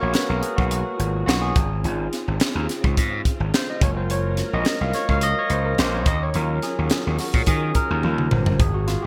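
The excerpt opens with a barky tine electric piano taking the lead, its bright, lightly overdriven tone run through a combo amp and thickened by lush chorus, while dark studio strings hold sustained chords far in the background. This is polished 1980s jazz-funk pop in Db major, upbeat and breezy, moving at 106 BPM in 4/4 with a swung sixteenth-note feel. A gritty slap bass sits up front with an overdriven, direct-amped edge. A crisp fusion drum kit, airy with a high-tuned snare and punchy kick under gated reverb, drives the groove and plays a fill from 8.0 to 8.6 seconds. The chords move from Abm7 through Dbmaj7/Ab, Gbmaj7 and Ebm7 before landing on Eb7, all within bright digital production and a small room ambience.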